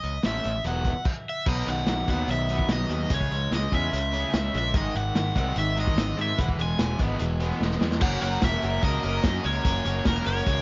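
This carefree, upbeat indie rock cut opens at 146 BPM in a straight 4/4 with a warm, overdriven garage guitar carrying the melody through a dub echo. A punchy, direct picked electric bass sits up front beside a lo-fi, muffled vintage kit, whose medium-tuned snare, tight kick, hi-hat and crash cymbal sound like a small room with a rolled-off top. At 0.2 seconds a second raw garage guitar adds an overdriven riff placed up front, and at 1.5 seconds a bright overdriven electric guitar joins with its own riff, coloured by analog chorus and dub echo. The harmony moves from A and Esus2 through B, C#m, G# and E before a drum fill at 7.6 seconds leads into a final section on F#, all in F# mixolydian. The mix is echo-heavy and dark, with its highs trimmed, and the passage is cut from a longer piece.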